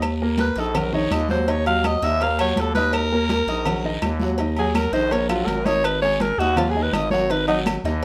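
Fiery and sophisticated, this short excerpt from a longer Afro-Cuban jazz piece moves at 165 BPM in a straight 4/4, centred on Eb minor, with the harmony shifting from Ebm to Ab5 at 5.8 seconds. A growling alto saxophone takes the solo up front, entering at 0.4 seconds with a raspy, gritty edge, scooped notes, vibrato and a smooth top. Beneath it, a thick FM bass with a fast attack and sustained tone sits prominently in the low register, while an intimate grand piano with audible action noise enters at 0.2 seconds to supply accompaniment. The percussion is a layered bed set mostly in the background: vintage, medium-tuned congas, ringing metal-shell agogo bells and timbales, woody, saturated claves, and a raspy guiro, with a tight, high-tuned cowbell very quiet in the mix. Light reverb lends the whole a touch of space while keeping the saxophone clear and forward.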